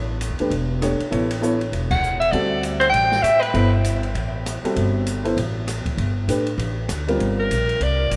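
A swung 4/4 pulse at 197 BPM drives this short, spiritual and intense modal jazz excerpt, set in a vast, echoing cathedral-like space. A pizzicato upright bass with a woody, up-front tone and an open drum kit with dark cymbals and a boomy kick lay down the groove, while a boxy upright piano with audible action noise comps through Asus4, D7sus4 and Gm11 harmonies. The band hits an accent at 1.9 seconds as a mellow, distant soprano saxophone enters with vibrato for a brief solo phrase, then returns at 7.4 seconds.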